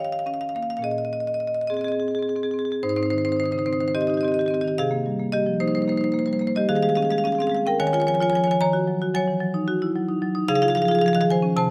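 A contemporary classical piece for solo marimba, this short excerpt from a longer work has a playful, warm mood, moving in a flexible 7/8 with a rubato feel. The marimba, struck with medium hard mallets on rosewood bars, sounds woody and bright, sitting up front as it ranges from Ab2 to Bb5 through rich chords such as Eb9 and Bbm11 before a second section opens on Abmaj7 at 2.8 seconds. Close, detailed microphones capture each percussive attack, while a moderate recital hall reverb gives the instrument a gentle sense of space.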